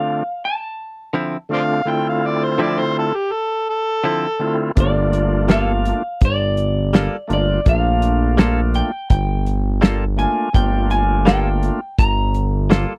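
Over a straight, unhurried 83 BPM pulse in 4/4, this mournful, brooding soul blues excerpt opens on a reedy tonewheel organ with slow rotary and overdrive beneath a twangy, slightly broken-up lead guitar with slapback echo, joined by clean, compressed guitar stabs with subtle chorus and a gritty, overdriven harmonica line from 1.5 to 4.6 seconds, before a fat-snared, dark-toned 70s drum kit and a gliding sawtooth synth bass arrive at 4.8 seconds as the harmony moves from Dm9 to Gm9 in a dry, close 1970s-style studio sound.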